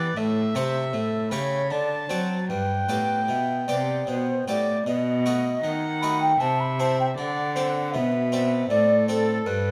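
An airy baroque flute with a wooden body and expressive vibrato carries the second line through this short fragment of a baroque-style classical sonata movement, its tongued notes mellow and distant. In the same register, a dark violin plays the melody with a nasal, gut-string tone in period style. A rich cello sits up front on the bass, reedy and bowed with light vibrato, while a brilliant Italian-style harpsichord with octave strings fills in the plucked continuo accompaniment. The mood is serene and radiant at a steady 78 BPM in 3/4 with a straight feel, moving through Am, A7, D7 and G before the phrase returns at 4.9 seconds over B7, C and D7. Close, detailed microphones capture each player in a moderate recital hall reverb, and all four parts play together throughout the 9.7 seconds.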